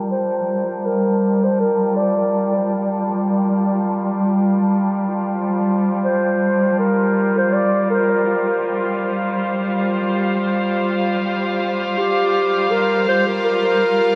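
Meditative and spacious, this ambient fragment from a longer piece sets a clear, biting, up-front string section holding sustained Gm7 chords with light vibrato beneath a dark, distant classical-style solo clarinet melody soaked in dub echo, all within an echo-heavy mix of plate reverb, vinyl crackle, a low-pass filter and a filter sweep running the full 14.2 seconds.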